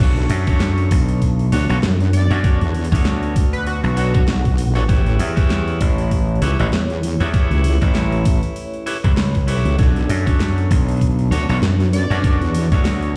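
Funky and gritty, this glitch hop drop in B minor at 98 BPM rides a swung 16th-note groove as a knocking, up-front electronic kick and a dubstep kit with a huge snare and metallic hats are joined by a heavy, wobbling sawtooth bass with chorus and tube saturation alongside a punchy, overdriven slap bass, while bright clean electric guitar stabs pump through sidechain and digital delay, an edgy, tearing sync lead cuts in from 2.1 to 4.7 seconds and briefly again near 11.9 seconds, and a very quiet, moody analog pad with phaser enters at 1.4 seconds, all moving over Bm7 and A7 in a large reverberant room flecked with vinyl crackle.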